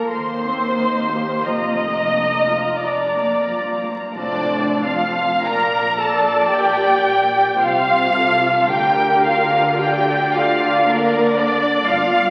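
A rubato 3/4 pulse drifting between 44 and 60 BPM carries this lyrical, warm slow romantic movement for string orchestra in Bb major, cut from a longer piece and turning to a new passage at 5.5 seconds. Throughout, con sordino violins sing a dark, veiled melody up front over a soft-attacked, distant second violin line, lush muted violas, distant cellos with light vibrato and smooth-topped double basses in the background, all bathed in concert hall reverb and the crackle of a very old 78 rpm record.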